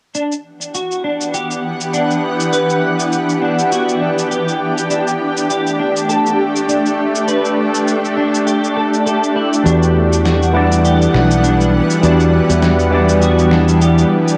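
A home cassette recording with a short, wet booth ambience gives this sunset chillout excerpt a soft, hazy tape sheen, drifting in E minor at 101 BPM with a gentle 16th-note swing. A shimmering, ethereal pad sits up front, holding detuned, granular sustained chords with an octave-up glow, slow attack and long release, colored by chorus and plate reverb. From the start, a bright, twangy electric guitar at the edge of break-up picks arpeggios through ensemble chorus, tape echo and a low-pass filter, while a gritty, compressed electronic shaker and medium-tuned snare keep time with overdrive. The harmony moves from Em9 to A7sus4 and back to Em9, and at 9.6 seconds a barky tine electric piano arrives through a combo amp with 12-bit sampler grit and tape echo. A growly, punchy fingered electric bass joins at 9.7 seconds, anchoring the warm, smooth mood through the closing moments of the excerpt.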